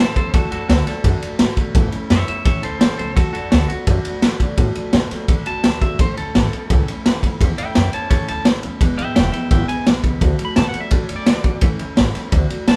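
Rockabilly at 170 BPM in A major, retro and rowdy, this 12.8-second excerpt has a twangy clean electric guitar carrying the melody over a bright, full-bodied picked steel-string acoustic and a woody, thumpy pizzicato upright bass on gut strings. A raw garage drum kit of punchy kick, ride cymbal and medium-tuned snare enters at 0.2 seconds, sitting up front with a saturated, gritty sound, dark cymbals and a pumping small-room character. The band plays live together in one room with light reverb, moving through D, A and E chords.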